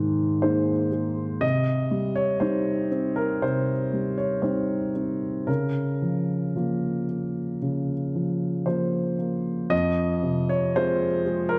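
Neoclassical minimalist piano with a reflective, melancholic mood, played rubato on a solo baby grand whose dark, mellow, vintage tone and long sustain sit up front in a moderate scoring-stage reverb, drifting from Abadd9 through Cm and Bbm/Db before settling on Fm at 9.7 seconds in this short fragment of a longer piece.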